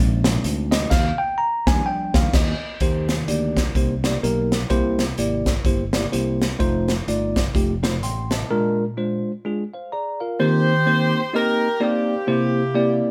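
A bright, bell-like tine electric piano opens this uplifting, soulful uptempo gospel piece at 127 BPM in Eb major with a swung feel, soloing briefly before settling into accompaniment, backed by a fingered electric bass and a punchy, airy acoustic drum kit with a medium-tuned snare until a break at 8.5 s, after which a tight, jazz-style saxophone section with vibrato carries the melody from 10.4 s, the band sounding live in a moderate stone room.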